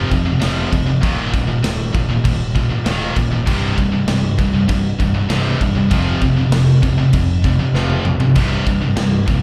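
A scooped, high-gain electric guitar leads this dark, relentless heavy metal excerpt, its bright, picked riff sitting up front in a low register. A second tight distorted guitar plays the riff in the same register from the background, adding a bright edge beneath the main part. A fretless electric bass supplies a warm, round, punchy low end, heard direct and amped behind the guitars. A big acoustic rock kit enters at 0.1 seconds with a tight kick, a medium-tuned snare, toms and crash cymbal, sounding natural and roomy in the foreground, and it plays a fill at 7.8 seconds. The harmony moves through F5, Eb5, C5 and back to F5 before landing on C minor at 8.4 seconds. The whole thing sounds like a live club gig heard through the venue's PA, with small-room ambience and club reverb around it.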